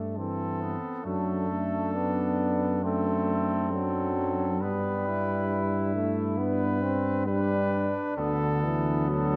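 Classical, hymn-like brass band music in G major moves at a lyrical, rubato 67 BPM in this short cut from a longer piece, where a dark, punchy tuba sits up front on the bass line and a warm trombone with vibrato supplies accompaniment from 0.0 s, joined at 0.2 s by a cornet carrying the melody with a smooth, warm top, a distant, roomy flugelhorn on the second line, and a clear euphonium with light vibrato and soft attack tucked in the background, all over chords moving from Am7/G through D/F# and G to D in a moderate concert hall reverb.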